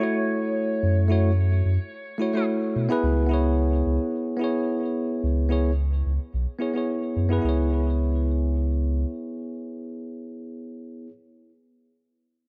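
A bell-like tine electric piano sits up front in this relaxed, smooth sunset chillout excerpt in C# minor at 109 BPM with a light 16th-note swing. Its clean tone runs through a low-pass filter and digital delay, with a filter sweep between 3.0 and 7.4 seconds as the harmony moves from F#m7 to C#m7. A bright pedal steel guitar, played with fingerpicks and slide, opens with a brief compressed melody of volume swells and digital delay, while a round, sine-like sub bass enters at 0.8 seconds to hold the low end with deep, mellow sustain, all set in light reverb with a soft top end.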